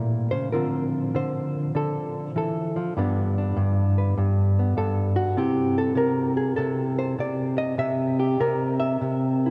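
A long, cathedral-like reverb with a 6.1-second tail surrounds this short solo jazz excerpt, lending the church or concert-hall space a vast, lingering bloom. A clean, dark electric hollow-body guitar sits up front, fingered and compressed, swinging loosely with a rubato feel from 0.0 to 9.5 seconds. It moves through A, Dm7 and G before settling on C around 5.4 seconds, in a warm, swinging mood.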